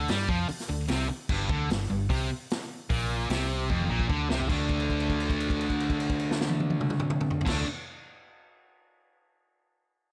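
A bright, overdriven, double-tracked electric guitar riff and a dark, round, foam-muted fingered bass open this gritty, driving blues rock and southern rock excerpt at 150 BPM, with an up-front vintage drum kit of punchy kick, snare, hi-hat, crash and toms whose fill at 3.7 s leads into a held note from 4.5 s, over D5 and G5 chords in a light studio reverb.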